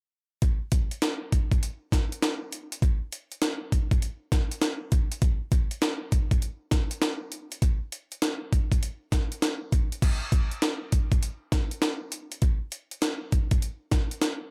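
A 65% swing on the sixteenths at 100 BPM in 4/4 gives this bouncy, flirty R&B excerpt its lilt, carried from 0.4 to 14.4 seconds by a gritty, compressed breakbeat sampler-style drum kit sitting up front in light reverb, with a thumpy kick, a high-tuned snare, hi-hat and crash cymbal.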